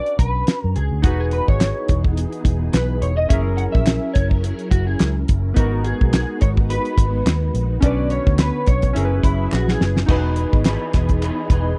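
Indie and bedroom pop at 106 BPM in E lydian with a sunny, hazy mood, this dry, close 1970s-style excerpt opens on a clean, slightly broken-up guitar solo through a small old amp with warbly chorus drift, over glossy pulse-wave synth keys, a thuddy cloth-damped kit with a fat snare and dark cymbals, and a round foam-muted bass, while mellow string-machine violas arrive at 1.0 seconds, crisp handclaps sit in the background, and a drum fill at 9.5 seconds leads into a new section on Emaj7 at 10.1 seconds.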